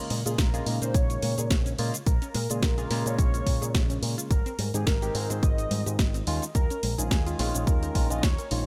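Groovy and sleek, this nu-disco excerpt moves at 107 BPM in 4/4 with a light 16th-note swing, circling Bbm7 and Abmaj7 in Bb dorian. A thick, detuned sawtooth unison lead carries the melody with vibrato, subtle chorus and dub echo, over a bright, barky tine electric piano that is lightly overdriven, phased and sidechain-pumped, while a lush, very quiet unison pluck traces arpeggios through a filter sweep. Underneath, a picked electric bass with an envelope filter pumps against an up-front, tape-warm electronic kick that enters at 0.4 s, and a layered house kit adds hi-hat, shaker and a cracking snare, all set in a digital ambience.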